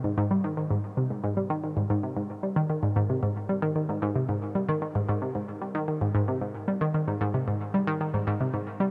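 A straight, steady 4/4 pulse underlies this brief ambient fragment, cut from a longer piece, with a cosmic, luminous mood. A lone analog pluck carries it from 0.0 to 8.8 seconds in a low register, its round, detuned sawtooth and square tones layered with a touch of noise, a filter sweep, fast attack and short decay, colored by chorus and tape echo and placed up front. It sits in a huge ambient reverb with a long 9.3-second tail.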